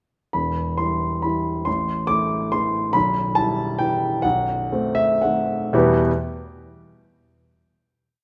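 Elegant and bittersweet, this brief classical piano waltz in E minor unfolds in 3/4 with a free, rubato feel, moving between 109 and 150 BPM. A solo grand piano carries the whole piece, pairing a single-line melody with a waltz bass across a range from B0 up to D6. The instrument sounds intimate and natural, sitting up front with audible action noise, all set in a wet recital hall reverb. The harmony passes from Em through Am and Em/B to a B7b9, with the tempo slowing down from 2.3 seconds. The piano stops at 6.1 seconds, and the final Em chord from 5.7 seconds rings on into the hall to close this complete, miniature piece.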